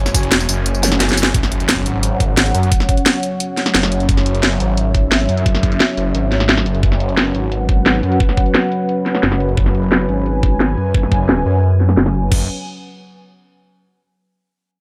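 Dark technical drum and bass at 175 BPM, this mechanical, futuristic cut from a longer piece opens on a drop over an F#5 chord, with a drum fill at 1.0 seconds leading into an impact at 1.3 seconds. A knocking, up-front electronic kick and a layered kit with a cracking snare, bright hats, crash and tambourine drive the track, while a thick, swirling detuned saw bass, saturated with phaser and overdrive, pumps with sidechain. Both the drums and the bass carry a long filter sweep, a deep, moody analog pad with chorus holds sustained chords beneath, and a faint electronic zap sits in the background, all in light reverb.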